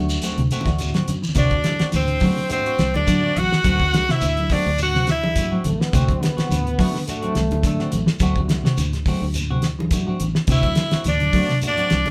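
Swung sixteenths push this hypnotic, joyful afrobeat groove at 105 BPM in 4/4, with a dry, fat-snared 70s drum kit up front that opens with a fill, backed by ringing congas, a grainy distant shekere and a round, foam-muted fingered bass over a D7 chord in D mixolydian. A mellow guitar fingers arpeggios through spring reverb, a hollow-bodied semi-hollow guitar adds stabs, and a barky tine electric piano with phaser sits in the background. At 1.4 s a raspy, gritty tenor saxophone takes the melody with a bright trumpet above it, a clear trombone section carries the second line from 5.7 to 8.2 s, and the saxophone and trumpet return at 10.5 s in this live-in-one-room excerpt cut from a longer piece.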